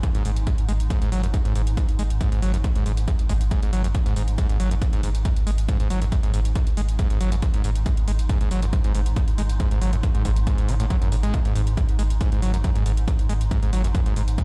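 Driving peak-time techno with a dark mood, cut from a longer piece, built on a punchy, up-front electronic kick and pumping metallic hi-hats alongside a thick, saturated sub bass, while a squelchy, screaming acid line with filter sweeps, distortion, chorus and dub echo rides over a swarming, detuned granular drone in the background, all in a dry mix with a big-system room sound.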